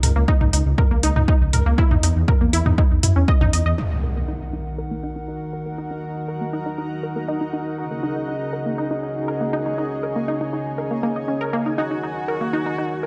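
Melodic techno excerpt with a driving, melancholic mood: a lush, sidechain-pumped unison pluck arpeggio runs throughout while a rumbling detuned saw bass, a punchy electronic kick and a deep house kit with metallic, filtered hats and toms drive the opening section, then an impact ushers in a moody, nasal analog pad with chorus, a cloudy granular pad drifts in, and a smooth soft supersaw melody with dub echo appears at 11.8 seconds, all in a light digital ambience.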